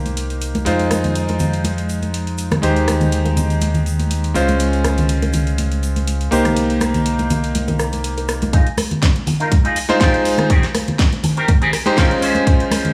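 Groovy and cosmic, this nu-disco excerpt moves at 122 BPM in F minor with a light 16th-note swing. A clangy, up-front electric grand piano pumps under sidechain with tape echo over Fm7, Abmaj7/Eb and Dbmaj7 chords, while a fingered envelope-filtered bass, a pop kit with metallic hats and a fat snare, and close, dry hand percussion of shaker, congas and bongos carry the groove. At 8.5 seconds the bass drops out as a punchy electronic kick and a twangy, scooped, envelope-filtered guitar riff enter for a build-up, the guitar treated with ensemble chorus, tape echo and a filter sweep, all in light studio reverb.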